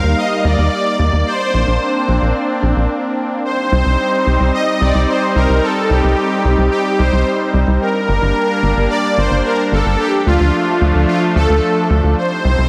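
Synthwave with a driving, nocturnal mood, cut from a longer piece: a soft, detuned supersaw carries the melody through delay over a smooth, nasal analog pad of sustained, chorused chords that gets a filter sweep during the first 3.4 seconds, while a tight, punchy sequencer bass with saturated, ring-modulated plucks drives underneath, and a brief break at 2.9 seconds leads into the second section of a dreamy mix soaked in lush hall reverb.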